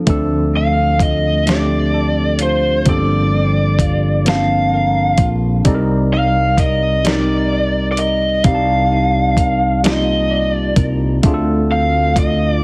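Heavily compressed, radio-like sound with light reverb frames this slow, late-night and yearning six-eight R&B passage, where a gritty sampler-style soul drum kit with a thumpy kick and a growly fretless bass sit up front, a worn, slightly out-of-tune tine electric piano accompanies through its built-in speakers, a dark semi-hollow guitar with analog chorus plays a clean, fingered second line in the background, and from 0.6 s a picked lead guitar through a small cranked amp carries the overdriven melody over Dm7, Gm11 and Cm9.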